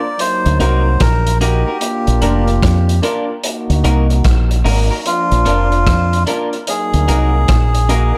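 Roots reggae at a laid-back 74 BPM in 4/4, with a swung sixteenth-note feel and a sunny, easygoing mood, this short excerpt is cut from a longer piece and moves between Ebm and Bb. A reedy, breathy melodica carries the melody up front, its nasal tone trailed by dub echo. Beneath it, a deep, round fingered electric bass sits prominently with a punchy, direct-amped sound. The crunchy breakbeat kit of hi-hat, kick drum and rim click enters at 0.2 seconds, saturated and gritty with a rolled-off top. A close-miked trombone section plays a punchy second line with dub echo, while a concert grand piano adds stabs from the background. A clean, twangy, compressed electric guitar joins at 0.6 seconds with picked accompaniment, also touched by dub echo, all set in a small room with light reverb.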